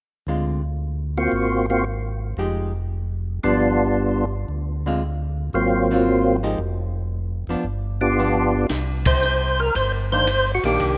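A fat, lightly overdriven tonewheel organ carries the melody from 1.2 seconds, its third-harmonic percussion, key click and chorus vibrato spinning through a slow rotary speaker, over a round, mellow organ bass line and clean, hollow-body archtop guitar accompaniment in this bluesy, late-night soul jazz organ trio cut in C minor at 114 BPM with a swung feel. Moving through chords such as Dm7b5, Ab13 and G7, the groove stays organ-led until a compact cocktail kit with a punchy kick and high-tuned snare joins at 8.7 seconds, landing on Cm9 with a band accent at 9.0 seconds. A moderate plate reverb softens the rough home-demo mix.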